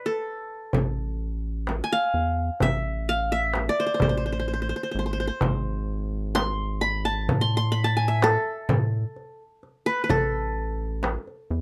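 Longing and melancholic, this excerpt from an Arabic maqam ensemble piece moves in 10/8 at 128 BPM, counted in eighths, with a straight feel in A maqam nahawand. The qanun opens alone and carries the melody up front, its plectrum-plucked triple strings sounding bright-edged and acoustic as it ranges from A4 to C6. At 0.7 seconds a rubbery square bass joins, hollow and bouncy with a resonant filter pluck, a fast attack and a dark, sustained, evolving tone that sits low between G#1 and A2. The darbuka enters at the same moment, its clay shell and natural skin giving a vintage, band-limited sound under soft hands. A deep, large frame drum, compressed and saturated and struck with hard hands, fills out the percussion until 11.2 seconds, while light reverb surrounds the ensemble through to the end at 11.6 seconds.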